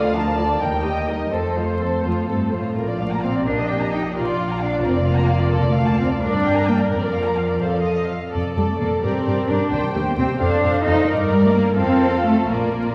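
A lively, cheerful classical-period movement for muted string orchestra in a straight 6/8 at 86 BPM in B-flat major opens with veiled con sordino violins carrying the soft-attacked melody over a second violin line, lush violas and an up-front cello bass, joined at 2.8 s by dark double basses, all set back in a wet concert-hall reverb with vinyl crackle in this short excerpt cut from a longer piece.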